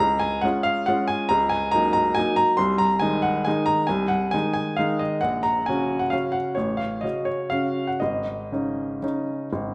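A clear, woody upright piano sits up front and plays alone in this elegant, sparkling classical waltz in 3/4, moving with rubato between 116 and 145 BPM over a 9.7-second cut from a longer piece, its intimate, natural tone carrying audible action noise and long sustain into the wet reverb of a recital hall, tuned to A4 = 439 Hz, as the harmony moves from Db through Ebm7/Db and Gb/Bb to close on Absus4.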